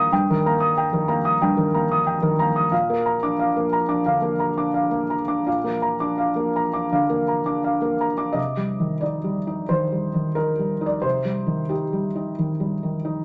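A felt-muted upright piano plays alone, soft, mellow and up front in a moderate studio reverb, in this intimate, wistful fragment of neoclassical minimalist piano in C minor, moving in a rubato 4/4 around 81-93 BPM from Eb/G to Bb and settling on C minor at 8.4 seconds as the music shifts into a new section.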